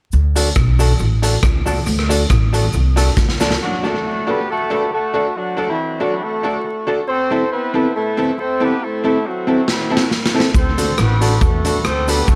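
Cheerful and joyful, this excerpt of swung ska at 138 BPM in D mixolydian opens with woody pizzicato upright bass, a grainy cabasa with tape echo, a gritty, saturated garage drum kit with punchy kick and rim click in a pumping stone room, a dark, clean electric guitar in the background and brilliant, slightly detuned upright piano stabs with tape echo, before a smooth, tight horn section with a touch of vibrato and octave doubling takes the echoed melody at 3.6 seconds while bass, cabasa and drums drop away, until a drum fill at 9.7 seconds brings the kit back ahead of the bass and cabasa, all under light reverb and vinyl crackle.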